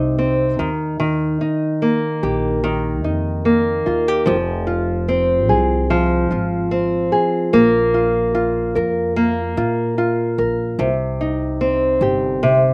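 Acoustic pop with a carefree, easy-going mood at a relaxed 74 BPM with a light sixteenth-note swing, this short cut from a longer piece sets a dark, small-sounding fingerpicked nylon-string guitar up front over a woody pizzicato upright bass, both playing throughout the dry outdoor recording as the chords move from Cm through Eb, Fm and Bb5 before returning to Cm at 10.8 seconds.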